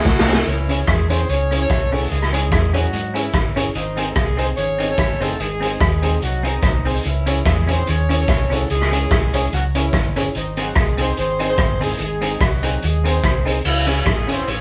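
A lightly swung ska groove in 4/4 drives this energetic excerpt. It opens with a drum fill under a fleeting, breathy trumpet before an octave-doubled horn section takes the melody at 0.5 s. Beneath it sit a gritty, saturated garage kit with a punchy kick, a dark, round hollow-body bass, and a clean semi-hollow guitar and woody upright piano stabs tucked in the background. A barely audible, jingly tambourine returns at 7.3 s, and the band is heard playing live in one room with vinyl crackle and lossy artefacts as the chords swing between C#m and G#.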